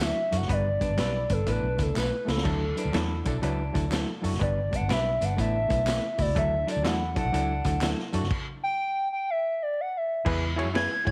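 A hollow, woody clarinet-like synth lead with chorus and vibrato carries the melody up front from the start of this uplifting, danceable 1960s-style soul cut in D major at 123 BPM with a swung feel, over a gritty overdriven reed electric piano, a round foam-muted fingered bass, a dark-cymbaled vintage drum kit with a punchy kick and a fill at 2.0 seconds, a very quiet flute-like tonewheel organ on rotary speaker, twangy clean guitar stabs, a slightly broken-up background guitar riff, and maracas, handclaps and tambourine that drop out at 8.2 seconds before a stop at 8.3 seconds, all under light studio reverb and vinyl crackle.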